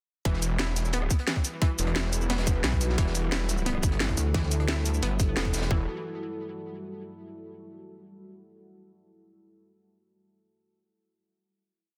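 A futuristic, aggressive dark technical drum and bass piece opens at 0.3 s straight into the drop, with an overdriven, tight electronic kick up front, a cracking drum and bass kit with bright hats, rim clicks and shaker, and a very quiet, gritty looped breakbeat beneath. A thick, sidechain-pumped detuned saw bass plays chopped phrases, and a punchy, warbling unison pluck runs an 8-step arpeggio through delay. A deep, moody ambient pad with chorus and built-in reverb enters at 1.5 s, a heavy, pulsing wobble bass with tube saturation and changing wobble speed joins at 4.2 s, and the piece closes on a final chord from 5.7 s.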